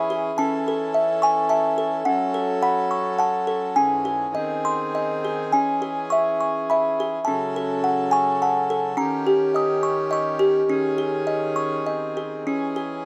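A delicate, tinkling music box carries the melody up front, its plucked notes ringing with the small-box character of a child's keepsake. Beneath it, an accordion holds sustained chords, reedy and dark yet smooth, sitting quieter in the mix. This gentle, wistful lullaby sways in three, with a rubato feel that lets the phrases breathe freely. The harmony drifts through minor colours, passing from F#m through a D#7 at 9.0 seconds and a suspended G# before settling on C#m at 12.5 seconds. The sound is dry and close, like an intimate 1970s studio session with little reverb. Cut from a longer piece, it closes at 13.1 seconds.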